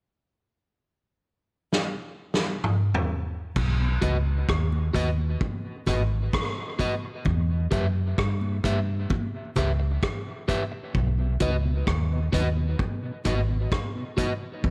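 A round, foam-muted electric bass sits up front in this hazy, spacious dub reggae excerpt at 65 BPM in B major, entering at 3.6 seconds after a drum fill on a vintage kit with dark cymbals and a tight kick, as the harmony moves from B to E minor and back to B. An electric guitar at the edge of break-up adds picked phrases soaked in dub echo, while soft-handed, high-tuned congas play very quietly until 9.8 seconds. A mellow tonewheel organ with chorus vibrato, slow rotary speaker and dub echo stays in the background and returns at 11.2 seconds, the whole piece set in an echo-heavy mix with light reverb.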